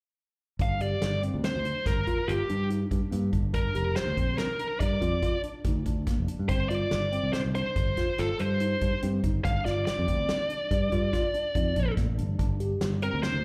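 A driving, tense progressive instrumental in an uneven 7/4 with a straight feel, caught live through a club PA, where a distorted, bluesy lead guitar carries the melody with slapback echo over worn, slightly out-of-tune electric piano arpeggios, an up-front fingered bass, and a natural country kit with punchy kick, moving from Gm7 through F5/G and Bb/G to G5 before the clip cuts at 13.4 seconds.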